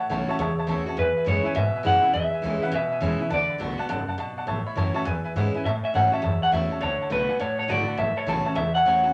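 A twangy, slightly broken-up electric guitar through a small old amp carries the melody, dropping out at 3.6 seconds and returning at 5.7, over a full-bodied picked jumbo acoustic guitar, a brilliant upright piano and a thumpy gut-string upright bass in this upbeat, rowdy rockabilly excerpt at 205 BPM with a swung feel in A major, set in a moderate club reverb.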